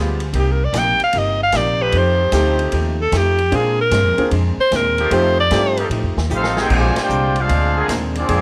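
Big band swing, energetic and joyful, in which a breathy alto saxophone solo with scooped notes rides over a woody pizzicato upright bass, a punchy swinging drum kit, a clean hollow-body archtop guitar, distant sustained trombone chords and, in the middle stretch, an intimate baby grand piano, before a drum fill at 6.3 seconds brings in a roomy trumpet section with slapback echo on the melody and a bright trombone second line, capped by a band accent at 6.9 seconds.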